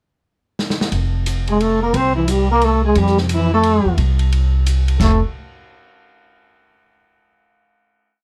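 A dark-cymbaled drum fill at 0.6 s opens this short, relaxed small-group swing and bop piece in 3/4 at 177 BPM in F major, as a woody, gut-strung pizzicato upright bass enters with a thumpy two-feel at 0.9 s under a stick-played ride pattern, and from 1.5 s an up-front, buzzy trombone with metal mute states a bebop-style theme while a distant, whispered alto saxophone with light vibrato adds octave doubling, captured with close, detailed microphones and light reverb before a final chord on F.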